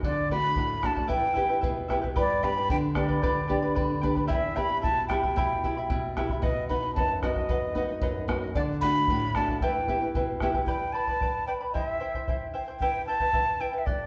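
An airy, mellow cane quena with vibrato and a soft attack leads this festive yet melancholic Andean folk excerpt, up front over a shimmering fingerpicked charango with double strings, a small, dark fingerpicked nylon-string guitar that stops at 10.7 seconds, and a deep bombo, all played together live in one room and bathed in a wet, large studio reverb.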